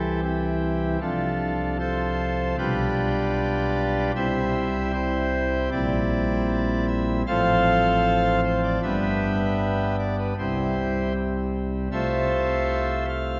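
Majestic and reverent, this classical chorale-style piece for pipe organ moves at a steady 77 BPM in a straight 4/4 feel, centred in C major. The organ plays alone for the full 13.4 seconds, voiced on a cornet solo stop whose nasal, romantic colour sits up front in the sound. Its range spans from a deep G1 in the bass up to F5, giving the chorale both weight and a singing top line. The harmony unfolds patiently, starting on C and passing through Dm7/C, G7/B and C7/Bb before settling through F/A and G back to C, then resting on F/C. A wet church reverb with a 2.6-second decay surrounds the organ, lending the clip a spacious, devotional atmosphere as it is cut from a longer piece.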